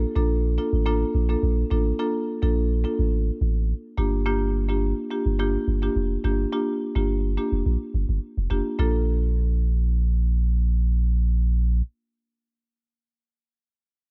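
A straight 4/4 afrobeats groove carries this breezy, joyful fragment, where a woody marimba played with medium mallets sits up front over a deep, punchy sub bass with a pitch-drop attack, moving from Bbmaj7 to Gm7 and back to Bbmaj7 at 8.8 seconds, all in a small room ambience.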